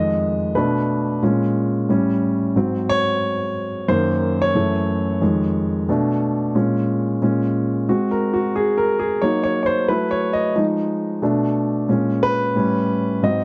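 R&B solo grand piano, smooth and soulful, with a swung sixteenth-note feel, its warm, up-front tone carrying a slapback echo as it moves through chromatic minor-seventh and dominant chords in a dry, close 1970s-style studio sound for this short excerpt.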